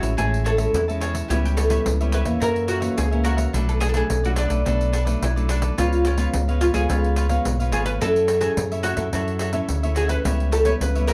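An oud carries the melody in this joyful, playful samba and choro passage, its bright, woody double strings plucked with a plectrum and ringing fretless between C#4 and C#5. Beneath it a fingered electric bass sits up front, round and punchy, and is the most prominent support in the mix. A crisp, picked cavaquinho and a small-sounding, fingerpicked nylon-string guitar fill out the accompaniment. A jingly pandeiro, close and dry, keeps the percussion going at a straight 107 BPM in 4/4. The harmony moves from Amaj7 through F#7, Bm7 and C#7 to F#m7 before landing on C#m7b5 at 10.2 seconds, and the whole 11.1-second clip, cut from a longer piece, is heard from further back in a small room with moderate reverb.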